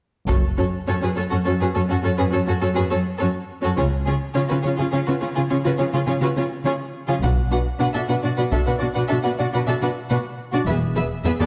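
Epic and relentless, this excerpt of a cinematic orchestral film score in F# minor builds at 70 BPM in 12/8, with a lush, up-front violin section singing a vibrato-rich second line over an even viola accompaniment, expressive cellos sliding with portamento, a distant, smooth double bass section, and a close, dry taiko ensemble striking with heavy sticks from 0.3 to 1.4 seconds and again from 7.2 to 8.8 seconds, all set in a moderate scoring-stage reverb with a dark, warm production as the chords move from F#m through C# and Bm to E.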